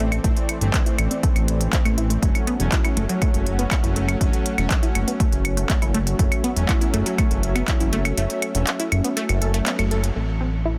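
A punchy, up-front electronic kick drives this dark, melancholic melodic techno fragment at 121 BPM until it drops out at 8.2 seconds, over a fat, detuned sawtooth bass, bright wave-folded unison pluck arpeggios with tape echo and a filter sweep, bold brassy synth stabs with chorus, vibrato and 12-bit sampler grit, a mellow analog pad holding Am and F#m chords in the background, and a techno kit of smooth low-passed hats, claves, handclaps and crash, with every synth part pumping against the sidechain in a dry, dense, heavily limited mix that lands a band accent at 9.7 seconds.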